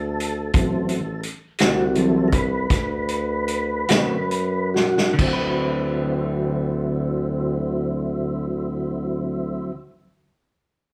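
A smooth tonewheel organ with key click, chorus vibrato and a slow rotary speaker takes the solo on sustained D7 chords in this gritty, rollicking slow blues in 12/8 at 44-59 BPM in D mixolydian, joined by a breathy tuba bass with light vibrato, a vintage acoustic drum kit with dark cymbals and a tight kick that plays a fill and stops at 5.4 s, and a slightly broken-up, compressed electric guitar through a small old amp with tremolo entering at 1.6 s, the band playing live in one room with moderate large studio reverb and slowing down before the harmony moves to D13 at 5.2 s.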